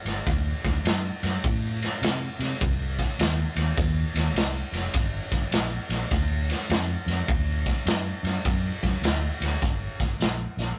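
A raw, gritty garage drum kit with a punchy kick, medium-tuned snare, hi-hat and ride cymbal sits up front in a small, pumping room, while a dark, round, foam-muted fingered electric bass carries the low end through this soulful, mournful electric blues shuffle in G minor at 103 BPM, a rough rehearsal-room excerpt cut from a longer piece that shifts to a new section at 9.6 seconds.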